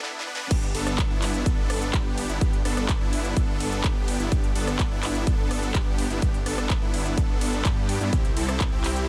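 A digital ambience with its low end filtered away frames this euphoric, triumphant festival progressive house passage in G major, cut from a longer piece and moving at 126 BPM in a straight 4/4. Huge, lush supersaw chords ride up front from the first second with cassette-tape colour, delay and sidechain pumping, while a drum fill from the big-room kit, with a massive snare, crisp hats, claps, rim clicks and filtered crash and ride cymbals, launches the drop at 0.5 seconds. There a punchy, tape-warm electronic kick joins a thick, chorused detuned saw bass that pumps beneath the chords, and the harmony shifts from G to C at 8.1 seconds.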